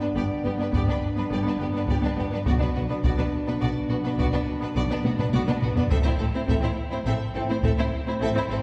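A slow 12/8 pulse at 70 BPM drives this dark, heroic cinematic fragment, where close, heavy-sticked taiko drums enter at 0.7 s and fill at 5.0 s beneath a clear, focused chamber violin melody, a lush symphonic violin second line, a bowed viola accompaniment, soft-attack French horn chords, and a background bass of cello and distant double bass, all moving through G, Bm and Am in a wet scoring-stage reverb heard from further back in the room.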